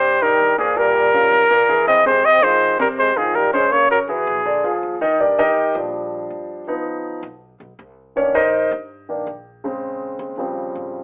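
A straight 4/4 jazz pulse at 162 BPM drives this danceable, sophisticated passage cut from a longer piece, with a woody, thumpy pizzicato upright bass on gut strings sitting in the background. A breathy trumpet with light vibrato carries the melody up front while a mellow trombone with scooped notes adds a second line, both dropping out before 5.2 s, when the tune settles into Eb major and an intimate concert grand piano, with audible action noise and long sustain, takes a solo through 11.0 s. The whole has a telephone-like filtered sound and moderate studio reverb.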